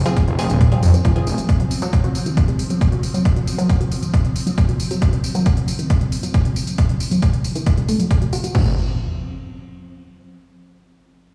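Driving peak-time techno with an intense, menacing pull, this excerpt sets a punchy, tape-tinged kick and crash kit and overdriven electronic hats and tambourine under a thick, detuned saw bass, a swarming granular drone, a tight sequenced synth riff with chorus and dub echo whose filter sweeps through the first 8.5 seconds, and brief phased dub chord stabs, all pumping against the kick over an opening F minor chord in a stone-room ambience, before an up-front impact lands at 8.5 seconds.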